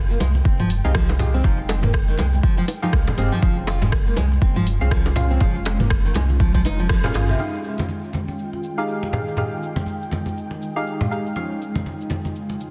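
An overdriven, up-front electronic kick drives this hypnotic, spiritual afro house excerpt at 121 BPM in F minor, alongside a deep round sub bass, dark fingerpicked nylon-string guitar arpeggios with audible finger squeak, low-tuned thick-skinned congas, tight high-tuned bongos in the background and an afro-pop kit with metallic hats, all over soft detuned chord stabs with delay and a slow, airy pad, until the kick drops out at 7.0 seconds and the bass and guitar fall away at 7.4 seconds.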